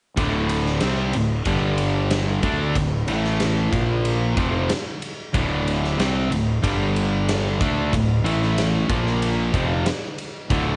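Hard rock with an aggressive, heavy mood, where a crunchy overdriven guitar up front and a tight distorted guitar, both bright and picked, play riffs over D5, G5, A5 and Bb5 power chords and D minor, backed by a round, fuzz-laden fingered electric bass and a big acoustic rock kit of punchy kick, medium-tuned snare and ride cymbal in a stone room, all heard in a short cut from a longer piece with the dulled top end of a home cassette recording.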